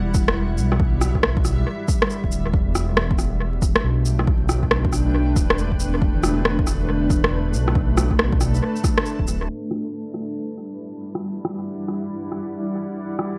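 Future garage at 138 BPM in E minor, with a swung 16th-note feel and a rainy, melancholic mood, cut from a longer piece. A granular cloud pad holds sustained Em9 and Gadd9 chords across the whole passage, its slow attack and long release giving a blurred, evolving haze softened by its own reverb and pumping against the sidechain. Beneath it, a dark detuned saw bass rumbles low and up front, its beating, saturated tone pumping in the same way until it drops out at 9.5 seconds. An overdriven electronic kick gives a deep pulse until 9.3 seconds, while an overdriven shaker and rim click sit prominently in the mix with studio reverb and analog delay, carrying on almost to the end. At 9.5 seconds the harmony returns to Em9 and a filter sweep runs through the closing stretch, leaving the pad and percussion under an echo-heavy, low-passed sheen dusted with vinyl crackle.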